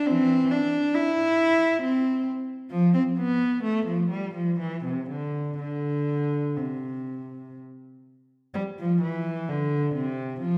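Serene and dance-like, this short portion of a baroque-style suite movement for unaccompanied cello moves in a flexible, rubato triple metre, with a single bowed cello playing alone throughout. The cello sounds rich and expressive, with vibrato, soft attacks and gliding portamento between notes, sitting up front while a wet recital hall reverb gives the impression of listening from further back in the room. At 8.6 seconds the music turns to a new section, which runs until the end at 10.6 seconds.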